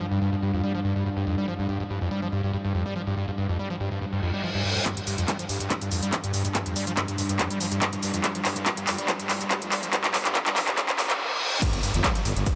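Driving peak-time techno at 142 BPM in a straight 4/4, this intense, hypnotic excerpt opens on a squelchy, resonant acid line screaming through distortion, chorus, delay and sidechain pumping over an eerie, metallic FM drone and an Fsus2 chord. A reverse cymbal swells in the background from 4.2 seconds, and at 4.9 seconds a punchy, tape-tinged electronic kick and an up-front, overdriven techno kit with crash, claps, smooth hats, ride and shaker kick in as a drum fill and a filter sweep on the acid line build, with another reverse cymbal and a riser in the background. The build lands on an impact at 11.6 seconds, where a very quiet big-room acoustic kit and a brief growling, thick FM bass join, all soaked in a dreamy, cavernous reverb.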